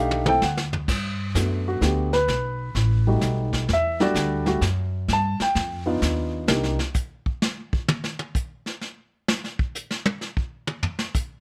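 This jazz piano trio piece is relaxed and sophisticated, swinging in 3/4 at 128 BPM in G major, and is cut from a longer performance. A dark baby grand piano carries the melody with a mellow, intimate tone, short sustain and audible action noise, moving through chords such as Gmaj9, B7b13, Em11 and C7sus2. A pizzicato upright bass with steel strings gives a woody foundation, and both piano and bass sit up front until 6.8 seconds. A vintage brush kit opens with a short fill, then uses brushed snare, hi-hat, toms, a punchy kick and dark cymbals, with a rolled-off top and a small-room character. The drums take a solo from 6.5 seconds and carry on alone to the end, with light reverb around the trio.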